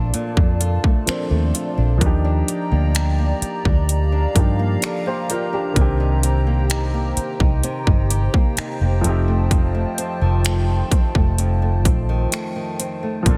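A present baby grand piano, a hollow, airy pad with chorus, and a fingerpicked flamenco guitar trailing digital delay open this smooth, tender contemporary R&B excerpt together, over a round, foam-muted electric bass that sits dark and punchy up front. A moment later an electronic trap kit joins with a hard-clipped kick, metallic hi-hats and finger snaps, pushed forward with overdrive. The parts move through Bbmaj7, Ebmaj7, Cm7 and F7 in a digital ambience under a dense, heavily limited modern master.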